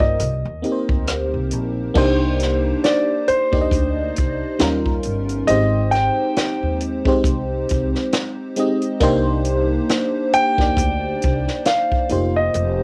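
Swung sixteenths glide over a slow 4/4 in this sultry, late-night neo-soul and R&B cut, where a compact cocktail drum kit with a roomy, high-tuned snare, punchy kick, rim clicks, hi-hat and crash plays alongside a woody, growly pizzicato upright bass. A lush, warbling FM electric piano layered with a soft pad carries the chords through chorus and cassette-tape coloring, moving from Cm9 through Eb9 and Abmaj7 before settling on F9sus4 at 12.1 seconds. Up front, an intimate grand piano sings the melody with its action noise audible, all wrapped in light reverb and the hazy feel of a home cassette recording.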